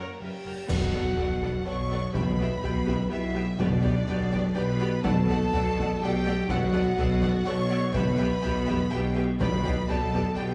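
Relentless and heroic, this cinematic orchestral film-score excerpt in 3/4 sets a focused, lush violin melody over background violins, violas, cellos and double basses, with an airy, bright flute adding a second line, warm sustained French horn chords, a soft-attack tuba and distant hard-stick taiko anchoring the low end, a huge, dark reverse cymbal and impact swelling into a bright clash-cymbal and bass-drum accent at 0.7 seconds, and round, very quiet soft-mallet timpani, all held in a moderate scoring-stage reverb.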